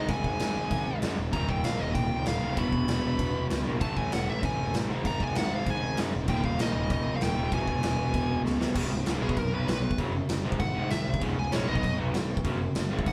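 Upbeat and rowdy, this clip of punk rock charges along at 194 BPM in a straight 4/4, with the whole band playing live in one room under a moderate studio reverb. Up front, a gritty, saturated acoustic drum kit pounds out crash cymbal, punchy kick and a medium-tuned snare, its pumping stone-room sound carrying a rolled-off top. Two picked rhythm guitars churn out the riff in the background, one bright and distorted, the other lo-fi and overdriven. Beneath them a growly fuzz bass adds a bright, amped overdriven edge. A dark, smooth overdriven lead guitar carries the melody over shifting Ab5, Eb and E5 chords, and after a drum fill at 8.4 seconds it breaks into a solo from 8.8 seconds until the cut at 13.1 seconds, as the harmony moves through Db5, Cb5 and Gb5.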